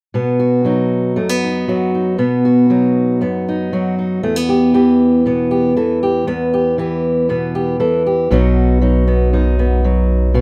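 Folk music with a stirring, yearning mood, moving at 117 BPM in a straight 4/4 feel, cut from a longer piece. A fingerpicked steel-string acoustic guitar carries the accompaniment from the start, its dark, up-front tone touched with plate reverb and finger squeak, moving from B to E minor. At 8.3 seconds the harmony returns to B and a round analog bass enters on a single deep B, sustained, with a fast attack and a sine-like, filtered character. The bass sits up front alongside the guitar, adding a dark low foundation for the closing seconds until 10.4 seconds. The whole has a moderate studio ambience and the rough feel of a home demo mix.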